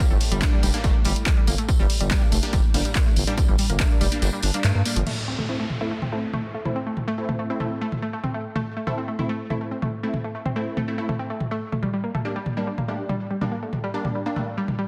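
A straight, driving pulse sets up this dark, intense peak-time techno cut from a longer piece, anchored by a punchy, tape-warm electronic kick that sits up front until it drops out at 4.2 seconds, just before a band accent at 4.6 seconds. Around it, a very quiet, dry acoustic kit with a high-tuned snare, hi-hat and tambourine fills the opening, while a punchy analog drum machine with handclaps, hi-hat, toms and crash cymbal carries on throughout, re-recorded in a small room. A growling, thick FM bass pumps against the sidechain in the first section, over a deep, moody sawtooth pad drone that lingers very quietly underneath. An analog pluck riff, round and detuned with a ring-modulated edge, runs the whole way with chorus and digital delay, joined by an aggressive, unison rave stab whose filter sweeps through the second section from 5.1 seconds, as an electronic downlifter marks the shift. 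The chords move from Gm to Am and back to Gm, all wrapped in light digital ambience and a dense, heavily limited modern master.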